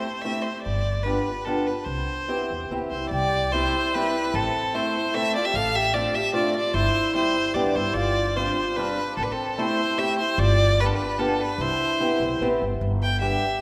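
A clear, smoothly bowed violin and a fingerpicked acoustic archtop guitar open this whirling, nostalgic musette waltz in C major, moving at 148 BPM in a straight 3/4. The violin sits up front with a light vibrato and an even tone, while the guitar's boxy, fresh-stringed voice carries the accompaniment, with finger squeak audible. A woody pizzicato upright bass joins at 0.7 seconds, and at 2.9 seconds a reedy, dark accordion with dry tuning adds a full, mellow second line. The harmony circles through chords such as Am7, G7, Cmaj7 and Dm7/A before settling on G, and the passage is cut from a longer piece. A wet concert hall reverb with a 2.4-second decay wraps the ensemble in the spacious sound of a church or hall.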